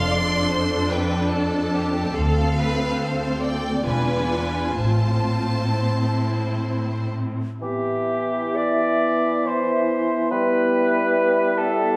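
A mellow, up-front cor anglais enters alongside a hollow flute, a warm clarinet, a bassoon and a tight French horn section from 7.6 s in this slow, yearning, elegiac romantic orchestral movement in 3/4, played with rubato at 60-75 BPM, taking over from the opening strings: a rich vibrato violin section singing the high melody over a clear second violin line, lush violas with portamento, focused cellos and dark, woody double basses, as the A minor harmony turns to E minor in a reverberant recital-hall ambience.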